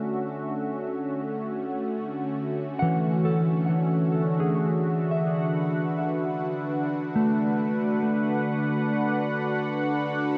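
A smooth analog pad and a mellow, clean electric guitar begin together, the pad holding a Dmaj7 chord while the guitar plays arpeggios above and around it. This is ambient music in free time, set in D lydian, with a luminous, peaceful mood. The pad has a soft attack and a detuned sawtooth character, with chorus and a moving notch adding gentle motion to its sustained tones. The guitar is dark and fingered, its notes carried by delay, and both parts sit up front. A huge, wet reverb with a 6.9-second decay washes over the whole sound, and the passage, cut from a longer piece, lasts about 10.4 seconds on that single chord.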